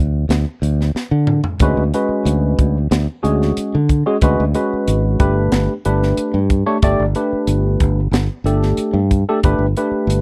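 Electric jazz fusion with a slick, funky mood, this short cut from a longer piece moves at 92 BPM in a straight 4/4 and sits in G lydian. A fingered electric bass opens at 0.0 seconds with a bright, growly, direct tone, placed up front and ranging from G1 to D3. A crisp fusion drum kit joins almost at once, its tight kick, medium-tuned snare, hi-hat and toms sounding airy and polished, and a short drum fill leads into the entrance of a barky tine electric piano at 1.6 seconds. The electric piano plays accompaniment between Ab3 and D5, clean and bright through a combo amp with an analog chorus. The harmony rests on Dmaj7 before moving to Gadd9 at 5.2 seconds. The whole is a dry, close 1970s-style studio recording with small room ambience.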